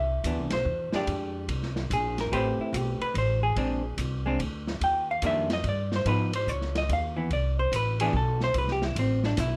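Relaxed and swinging, this short small-group jazz waltz features an up-front vintage hollow-body guitar with a dark, clean, picked tone comping through rich extended chords from Cmaj9 to Ebmaj7 and Db9, a woody pizzicato upright bass on steel strings sitting close beside it, and a boomy, dark-cymbaled open drum kit with ride, hi-hat, medium-tuned snare and kick entering at 0.2 seconds in a small room, all wrapped in light reverb.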